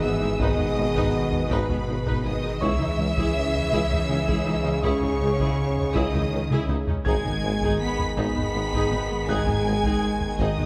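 Heard in a moderate concert hall, this brooding, futuristic hybrid orchestral and electronic film-score excerpt in 6/8 sets a lush, vibrato-rich violin melody over a soft-attack second violin line and smooth violas, while punchy French horns, tight trombones and a hollow, warbling pad hold sustained chords, and woody double basses, focused cellos, a very quiet tuba and a deep sub bass with a pitch-drop attack form the low end beneath brilliant, faint baby grand piano touches and hard-stick taiko that enter at 0.4 s and play a fill at 6.5 s.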